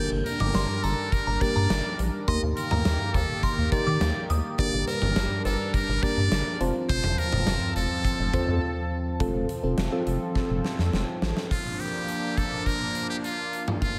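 A buzzy, close-miked trumpet with a metal mute carries the melody through tape echo over a crystalline synth bell with tremolo, a mellow FM electric piano, a sweeping sawtooth pad with chorus and a rubbery square bass, joined at 0.3 seconds by a huge arena drum kit with punchy kick, cowbell and toms in this driving, cool synth-pop passage at 104 BPM, which moves from Gm to Bb as a background downlifter enters at 11.5 seconds.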